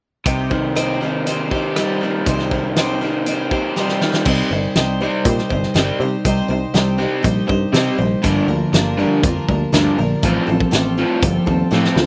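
Dusty and reflective, this short cut from a longer folk rock and heartland rock piece rides a straight 4/4 feel, with a shimmering, octave-doubled twelve-string acoustic guitar and a crunchy, double-tracked overdriven electric guitar riff sitting up front together. A dark, round, foam-muted electric bass anchors the low end, while a loose indie drum kit with a fat snare, punchy kick and gritty, rolled-off top plays drum fills at 3.8 and 11.7 seconds. The harmony moves from Cm to Gm7 at 8.2 seconds and then to Fadd9/A, all in a dry outdoor sound with little reverb.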